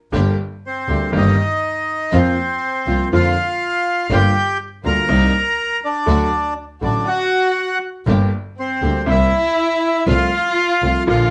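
A reedy, up-front bandoneon carries the melody from 0.7 s, its airy tone trailed by a slapback echo, in this tense, passionate tango excerpt played with a rubato feel. Beneath it, a clear, worn grand piano with long sustain supplies the accompaniment, a close, earthy bowed double bass with a biting, nasal edge holds the low end, and a lush, distant studio string section adds expressive stabs in the background. At 7.1 s a dark solo violin enters with a second line full of vibrato and portamento, all set in a moderate studio reverb.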